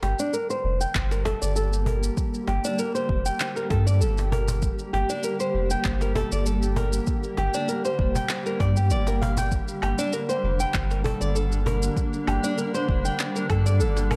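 A fingerpicked flamenco guitar opens this meditative, earthy organic downtempo piece in G minor at 98 BPM, its up-front arpeggios running through a low-pass filter sweep and tape echo over a round, sine-toned sub bass with sidechain pumping and a snappy acoustic cajon in a small room. Tape-colored electronic shaker, handclaps and woodblock join almost at once, and a cloudy, blurred granular pad of sustained chords, pumping with the sidechain, drifts in at 0.5 s. A deep, layered electronic kick arrives at 0.9 s and drops out at 13.6 s, all set in a dark production with a lush hall reverb and a lightly swung 16th-note feel.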